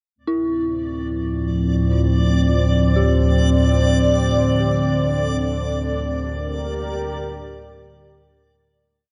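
A deep, moody analog pad opens this ominous, cavernous dark ambient drone in D minor at 55 BPM at 0.2 s, shifting slowly from Dm7 to Gm/D. It is joined by an up-front, evolving analog drone with pulse-width modulation and chorus, and by an eerie, inharmonic FM bell with chorus, phaser and tape echo, whose two slow arpeggio loops of unequal length drift against each other. A bright, reversed granular texture holds a high note, and the piece sits in a huge ambient reverb before a fade-out from 4.5 s.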